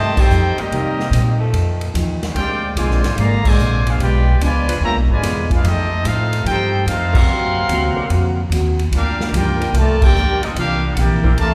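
The pizzicato upright bass stands out most, sitting up front with a woody tone on steel strings, in a brassy, energetic big band swing passage at 146 BPM in 4/4 with a strong swing feel, cut from a longer piece. The trumpet section carries the melody with a clear, vintage sound, light vibrato and a soft attack, while a warm trombone section plays a second line beneath it. A picked steel-string dreadnought guitar, full-bodied and dulled by old strings, keeps up accompaniment in the background, and a distant, roomy saxophone section with vibrato holds sustained chords. The swinging drum kit joins at 0.2 s with a punchy kick, medium-tuned snare, hi-hat, ride and crash, and the whole band hits accents at moments such as 3.4 s and 7.1 s. The harmony moves from F9 through Bdim7 and D7alt to a closing C9, all set in the lush reverb of a recital hall.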